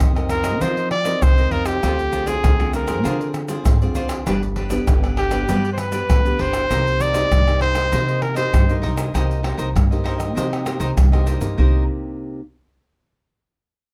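Yearning yet lively, this short cut from a longer samba and choro piece moves at 98 BPM in a straight 4/4, set in C minor. A warm, jazz-style trumpet carries the solo melody up front from 0.3 to 8.8 seconds, its vibrato and scooped notes sitting on a smooth top. Beneath it, a crisp, picked cavaquinho and a bright, fingerpicked nylon-string guitar with fresh strings and a classical touch share the accompaniment, while a woody pizzicato upright bass on steel strings holds the low end. A percussion group of egg shaker, deep surdo, pandeiro and tamborim sits up front with a live-room feel. The harmony moves from F7sus4 through Dm7b5 and G to Cm7, and the close, detailed miking with little reverb keeps every part clear and immediate, the guitar ringing on last until 12.4 seconds.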